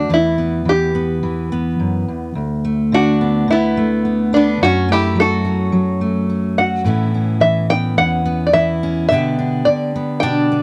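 An open-back banjo carries the melody up front, its fingerpicked tone mellow yet twangy and plunky, in this gentle, hopeful acoustic folk excerpt at 107 BPM in a straight 4/4. Beneath it, a fingerpicked steel-string dreadnought guitar supplies full-bodied accompaniment, sitting just as far forward in the mix. A metal-body resonator slide guitar, played with fingerpicks, adds a quieter second line with a metallic, nasal voice, appearing from 2.9 to 6.0 seconds and returning briefly at 10.2 seconds. The harmony moves from Em through Bm7/D and F#m before the second section at 6.9 seconds shifts to Aadd9 and then G/B. The sound is dry and close, with little reverb, in the manner of a 1970s studio recording.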